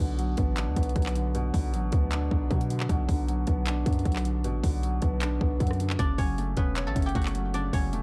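A silvery, fingerpicked guzheng rings through a delay in two brief phrases, from 0.0 to 2.0 seconds and again from 6.0 seconds, over a soft, felt-muted upright piano, a punchy, heavy 808 bass with a fast attack, and an up-front trap kit of hard-clipped kick, metallic hi-hats, handclaps and rim clicks entering at 0.2 seconds, giving this brooding, hard-hitting half-time trap hip hop excerpt a dark, dry production.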